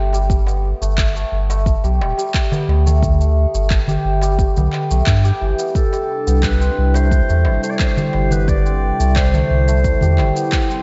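A steady, straight 4/4 groove at 88 BPM drives this earthy, meditative organic downtempo excerpt, built on a deep, overdriven electronic kick, layered overdriven shaker and handclaps, and a crisp, hard-handed metal-shell darbuka, all anchored by a round, up-front sub bass. A bright, shimmering santur plays arpeggios through a low-pass filter sweep and delay over G, then at 5.8 seconds the harmony moves to Cmaj7 as a clear, distant clarinet enters with a solo line in delay, joined at 6.1 seconds by a nostalgic, warbling tape-like pad whose sustained chords carry a sidechain pump. The dreamy mix sits in a lush hall reverb with soft, rolled-off highs.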